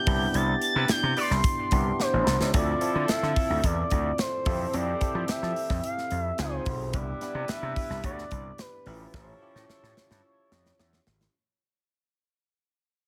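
A straight 4/4 groove at 109 BPM drives this breezy, upbeat slice of polished 1980s jazz-funk pop in C major, where a modern studio drum kit with a punchy kick and medium-tuned snare sits up front beside a gritty, overdriven slap bass, while a bell-like, barky tine electric piano with analog chorus comps through rich chords from Cmaj9 to Dm9, Fmaj9, Dbmaj9 and A7b13. Above them, an expressive sawtooth portamento lead carries the melody with vibrato and chorus, and a soft-attacked, vintage horn section adds a tight second line touched by delay from 0.8 s. A band accent and drum fill mark the opening, and from 2.5 s the dry, close-sounding mix fades out through a second section capped by another drum fill beginning at 9.1 s.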